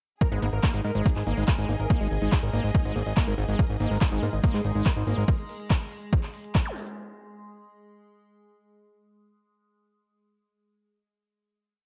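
A four-on-the-floor electronic kick, punchy and overdriven, drives this short psychedelic trance drop at 142 BPM in straight 4/4, with crisp programmed hats and claps from an overdriven big-room kit running from 0.2 to 7.0 seconds. Underneath, a fat, nasal analog bass rolls in sixteenth notes while a squelchy, gritty acid line with accents loops over six steps that drift against the bar, pumping to the sidechain and trailing tape echo. A mellow, detuned supersaw stab in the background repeats a riff over a pedal note in sixteenths, treated with phaser, sidechain pumping and digital delay, as a lush, bowed string section shifts chords slowly behind it. A very quiet, juicy blip pluck adds short answering phrases early on, and from 4.2 seconds an evolving, morphing wavetable pad holds a bright drone through phaser and its own reverb. An electronic zap marks the transition at 6.7 seconds, closing a dark, dry, alien-sounding production.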